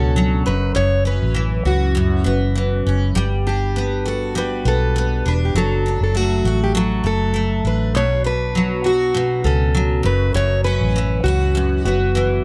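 A small room lends a moderate, close ambience to this tender, wistful acoustic pop excerpt, which unfolds in 4/4 with a light sixteenth-note swing. A fingerpicked, plugged-in jumbo steel-string acoustic guitar carries the melody in a narrow upper range, its fresh strings and full body given a sheen by plate reverb. Beneath it, a double-tracked, picked dreadnought acoustic sits up front, sounding rich and warm, with audible finger squeak as it fills out the accompaniment. A vintage fingered electric bass with a foam mute anchors the low end with a dark, round, punchy amped tone, placed prominently in the mix. The harmony moves from F#7sus4 through Gmaj7, D/F# and Bmadd9 before returning to F#7sus4 at 10.0 seconds, all three instruments playing together for the full 12.4 seconds.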